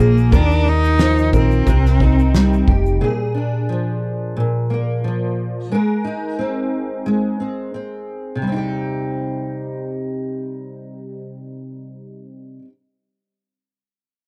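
Reflective and wistful, this acoustic pop passage, cut from a longer piece, moves in an unhurried 4/4 with a light sixteenth-note swing. A bowed cello opens with a clear, smooth melody, its even vibrato sitting in a narrow middle register before it drops out at 2.7 seconds. Beneath it, a double-tracked fingerpicked steel-string acoustic guitar sits up front with a concert polish and carries the accompaniment through to 12.7 seconds, long after the other parts have ended. The upright bass is plucked, woody and dark, with a forward presence, and a loose indie drum kit with a punchy kick, fat snare and shaker joins at 0.2 seconds in a pumping studio room; both stop at 3.0 seconds. The harmony drifts from Ebsus2 and Cm through Bb7 and Abadd9 before settling back on Cm, all framed by a small room ambience.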